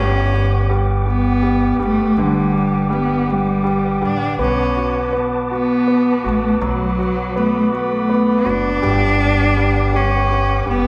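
A slow 6/8 pulse at 54 dotted-quarter beats per minute carries this aching, dramatic pop fragment, where a rich, smoothly bowed cello sings the melody with vibrato up front, a clear concert grand with long sustain and audible action noise accompanies, a mellow, flute-like tonewheel organ holds soft chords high above through chorus vibrato and a fast rotary speaker, and a woody, dark pizzicato upright bass anchors the Gmaj7 to Bm7 harmony, all set in the wet reverb of a recital hall.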